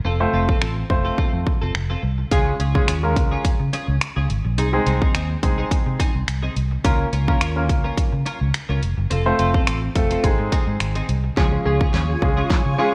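A straight 4/4 dance-pop groove at 106 BPM in Db major, summery and euphoric, opens with a dark, round, foam-muted fingered bass and a polished, warm baby grand piano, both with sidechain pumping, beneath a bright, twangy twelve-string electric guitar riff with subtle chorus, all in light reverb. Half a second in, an up-front electronic pop kit with a punchy kick, fat snare, hi-hat and finger snaps joins to drive the groove. At 11.4 s a drum fill launches a build-up, where a silky string machine with ensemble chorus and sidechain pumping holds sustained chords in the background and a very quiet, warbling, detuned unison pluck adds arpeggios.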